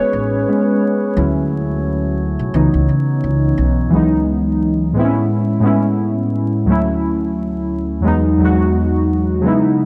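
Hip hop with a reflective, melancholic mood and a gently swung 4/4 feel, heard as an excerpt cut from a longer piece. Warbling lo-fi synth keys carry the accompaniment throughout, up front and nostalgic, with a detuned blend of triangle and sawtooth tones, a fast attack, a decaying mellow body, a filter sweep and chorus. An up-front pizzicato upright bass with a woody, bright steel-string tone enters at 0.1 seconds, while a glass harmonica holds quiet, ethereal sustained chords with a glassy, pure sound, slow attack and a beating shimmer. Both bass and glass harmonica drop out at 3.9 seconds, leaving the synth keys to carry the second section alone through to 9.9 seconds. The harmony drifts through lush extended chords such as Amaj9, Dmaj7 and C#m11 before reaching Emaj9, all set in a dreamy, reverb-soaked mix with a moderate plate reverb and a layer of vinyl crackle.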